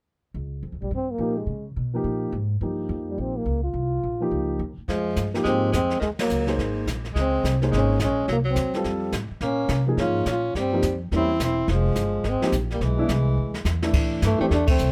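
Small-group swing and bop jazz in F minor moves at a brisk 212 BPM with a cool, swinging feel, cut from a longer piece. A woody, growly upright bass sets off first, played pizzicato and up front, and a mellow trombone soon carries the melody with vibrato, scooped notes and a soft attack. A dark baby grand piano with long sustain and a vintage character fills in the accompaniment beneath the horn. At 4.9 seconds the harmony shifts to Fm9 as a bright, present tenor saxophone enters on a second solo line and a brushed drum kit joins with dark cymbals, a medium-tuned snare and a boomy kick. The band hits an accent at 6.2 seconds, and a drum fill leads to the closing Am7 before a final accent. The sound is close and detailed, with little reverb.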